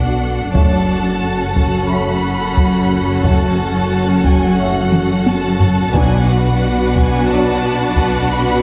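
A moderate scoring-stage reverb gives this dark, dramatic cinematic excerpt a sense of space, while the taiko ensemble sits close and dry up front, struck with heavy sticks. Lush bowed strings carry the music, with the violin section singing the melody in an expressive, vibrato-rich voice and a second violin line moving smoothly and evenly beneath it. The violas add distant accompaniment, and the cellos and double basses anchor the low end with soft-attack bowed tones, the cellos sounding especially close. From 0.5 seconds a French horn section holds sustained chords with light vibrato in the background, as the taikos enter and drive the piece on a straight 4/4 pulse. A drum fill at 4.9 seconds leads into a brief timpani stroke at 5.9 seconds, played with hard mallets on calf heads for an articulate accent as the harmony returns to Bm7.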